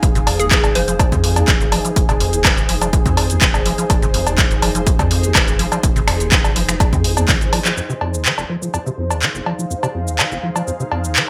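A rubbery, resonant acid bass riff, saturated and chorused with digital delay, drives this gritty 124 BPM acid house cut in F minor, pumping over a round sine-like sub bass, a dry electronic kick, and an up-front, tape-tinged drum machine of cowbell, finger snaps, handclaps, hi-hat and shaker in gated reverb, while a smooth detuned sawtooth pad holds an Fm7 chord and an ethereal phased pad drifts behind, a hollow, bouncy square pluck flickers in at 0.4 seconds, and a drum fill at 7.3 seconds leads to the kick and sub bass dropping out at 7.4 seconds, all in a bright 1980s-style digital production with light ambience.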